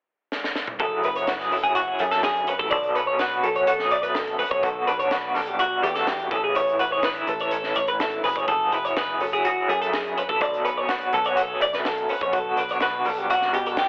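A straight 4/4 pulse at 125 BPM drives this wistful, playful math rock and midwest emo excerpt, as a crisp fusion drum kit with a high-tuned snare and punchy kick opens with a short fill at 0.3 seconds before, at 0.8 seconds, a bright, twangy twelve-string electric guitar enters with up-front arpeggios alongside a dark, slightly broken-up electric guitar with tremolo through a small old amp and a growly picked electric bass, all cycling through F#m9, Bm9 and Gmaj9/B chords inside a telephone-like sound with moderate studio reverb.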